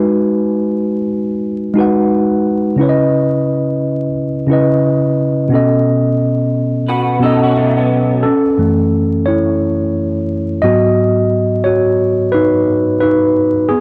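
Melancholic and hazy, this short lo-fi hip hop excerpt at 88 BPM sways on a 16th-note swing as a worn, slightly out-of-tune tine electric piano sits up front through a low-pass filter over chords moving from G#m7 to F#m7, joined briefly from 6.9 to 8.2 seconds by a slightly broken-up electric guitar through a small old amp with chorus and analog delay, before the piano plays alone as a solo from 8.2 seconds, all bathed in a wet spring reverb, warbling cassette tape drift and vinyl crackle.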